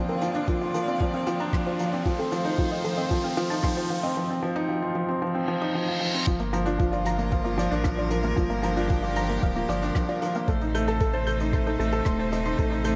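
Piano and strings electronica in G minor at 114 BPM, this hypnotic, melancholic passage cut from a longer piece sets an intimate felt-muted upright piano riff with delay up front over woody, bowed string quartet chords and a deep sine sub bass, both pumping against a soft, tape-toned electronic kick, while a gentle detuned pluck arpeggio with chorus sits in the background under a filter sweep and a smooth brushed kit plays hi-hat and rim click, as an electronic riser from 0.9 s and a reverse cymbal build to the drop at 6.3 s, all bathed in a lush hall reverb.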